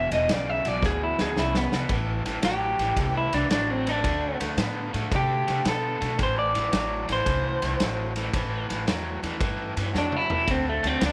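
A swung 4/4 shuffle at 112 BPM drives this brooding, mournful electric blues cut in A minor, where an up-front, slightly broken-up lead guitar through a small old amp sings a lo-fi clean solo from 1.9 seconds over a bright, crunchy overdriven riff guitar with harmonic tremolo, a woody pizzicato upright bass, and a punchy, dark-cymbaled vintage kit with a pumping room sound that drops fills at 0.8 and 9.9 seconds, all set in a small room's light reverb as the chords move through Am7, D5, Am and D7(no3).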